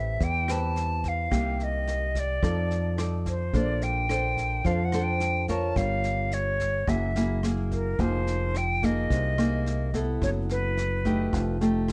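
Close, detailed microphones and light reverb give this short bossa nova fragment an intimate clarity. At 108 BPM in a straight 4/4, tuned to A4 = 439 Hz, the mood is sophisticated and breezy. A silver concert flute carries the melody up front with a pure tone, soft attack and vibrato, beside a small-sounding, fingerpicked nylon-string guitar that supplies the accompaniment. Beneath them a fingered electric bass sounds direct and growly. A vintage brush drum kit in a small room, with tight kick, medium-tuned snare and rim click, enters at 0.2 seconds and sits a touch further back. The harmony moves through rich chords such as Am9, Bbmaj9, Gm7b5 and F#9, reaching F9 near the end of this cut from a longer piece.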